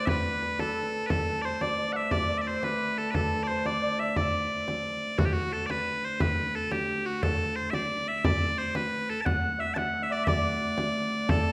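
Loud, piercing bagpipes lead this festive, ancient-sounding medieval dance in D mixolydian at 118 BPM in a straight 6/8, over a shimmering hammered dulcimer second line that drops out from 6.6 to 9.2 seconds, a pure, floating bowed viola da gamba drone on low D, and a deep, close frame drum struck with hard hands, all set in a wet recital hall reverb in this short excerpt cut from a longer piece.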